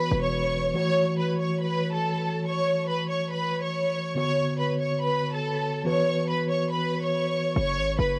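A lush, bowed symphonic violin section carries the melody with smooth vibrato over a mellow, clean tine electric piano from the very start of this dark, ominous half-time drill excerpt, both heard through a cassette tape coloring and the violins trailed by tape echo. A punchy, heavy 808-style bass with a noise layer and fast, decaying attack hits briefly at 0.1 seconds and returns at 7.6 seconds as the piano stops, leaving the violins over the bass until the close. The home cassette recording sits in a small room with light reverb.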